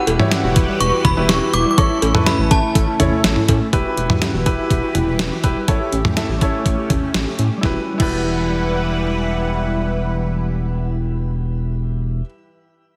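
A chiming, inharmonic FM synth melody opens this melancholic, cool synth-pop excerpt at 123 BPM in E dorian, over a lush, detuned unison pad with chorus, phaser and shimmer reverb and a warbling, lo-fi pluck playing arpeggios through chorus and delay in the background; the chime falls away at 3.4 s. A rubbery, hollow square-wave bass sits up front beside a thumpy, sampler-style 8-bit drum machine with cowbell, crash, hi-hat, snare and toms that plays until 8.1 s, while a brilliant concert grand piano with audible action noise and shimmer reverb adds accompaniment. Emadd9 alternates with A and A7 inside a lush hall ambience, and the whole mix has a heavily compressed radio sound.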